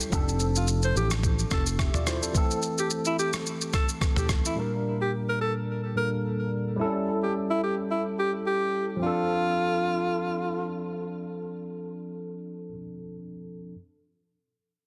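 Opening on a clean tine electric piano with ensemble chorus and a gritty, pitched-down boom bap sampler-style kit of thumpy kick, rim click, shaker and toms, this joyful, sunny afrobeats excerpt in F major at 108 BPM with a light swing brings in a growly, punchy fingered electric bass that stops by 1.9 seconds and a breathy alto saxophone solo with vibrato and delay from 0.6 seconds, while the drums drop out at 4.6 seconds, set in light reverb with a dense, heavily limited modern master.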